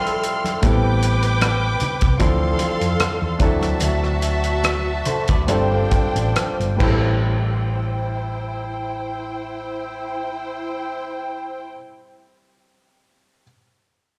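A lightly swung 4/4 groove from a cloth-damped, thuddy drum kit with dark cymbals and very quiet, soft-handed congas gradually slows from 0.6 s to 7.3 s in this silky, smooth excerpt of lush 1970s-style soul, where a round, dark hollow-body bass sits up front beneath a natural-sounding baby grand piano, a slightly broken-up lo-fi guitar riff that stops at 6.8 s, and a rich, vibrato-laden string section, the strings, piano and guitar each carrying slapback echo, with the performance captured as a live gig through the venue's PA in recital hall reverb.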